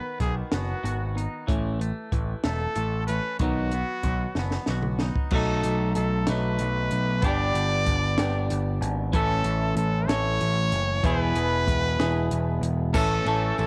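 An easy 6/8 pulse at 63 BPM, felt in dotted quarters, carries this carefree, jangly indie rock passage in A lydian, cut from a longer piece and captured as a home recording on cassette. An up-front trumpet with a brilliant, punchy pop tone sings the melody with vibrato and scooped notes. Two crunchy, picked overdriven guitars play riffs, one more present and the other tucked in the background with a subtle chorus, both colored by cassette tape. From 0.2 s, a growling, overdriven electric bass sits up front, and a dry compact cocktail drum kit with dark cymbals, a high-tuned snare and a punchy kick plays a drum fill at 4.4 s before the second section begins at 5.3 s. The chords move from B and A through B7, G, A6 and E to a closing Amaj7. Near the end, a jingly tambourine and a shimmering, retro pulse-width pad with a slow attack slip into the background.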